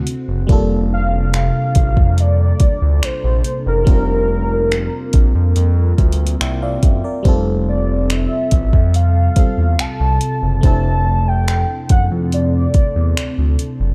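Up-front electronic R&B drums with a soft kick, metallic hats and finger snaps carry this smooth, romantic contemporary R&B piece in F major at 71 BPM alongside a mellow detuned sawtooth-and-square synth bass, a glassy, bell-like FM electric piano with chorus and phaser, and an ethereal, warbling vintage FM pad pumping in the background, while from 0.9 seconds a velvety, full-bodied unison synth lead with vibrato, chorus and tape echo sings the melody over Gm9/F, C9sus4/F, Fmaj7 and D7(no3)/F in a dark, lightly reverberant mix.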